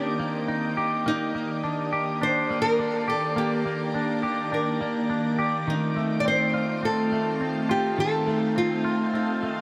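A twangy, compressed clean electric guitar sits up front with picked arpeggios under subtle chorus and digital delay, while a small, fingerpicked nylon-string guitar with fresh strings carries the melody through its own delay. Behind them an ensemble organ-string pad holds mellow, vintage sustained chords with soft attacks, phaser and ensemble chorus, as the harmony moves from Cm7 to Ebmaj7 at 1.1 seconds and F7 at 5.7 seconds. This blissful, floating dream pop excerpt in Eb lydian moves at a straight 104 BPM in 4/4, all of it bathed in a long, wet shimmer reverb.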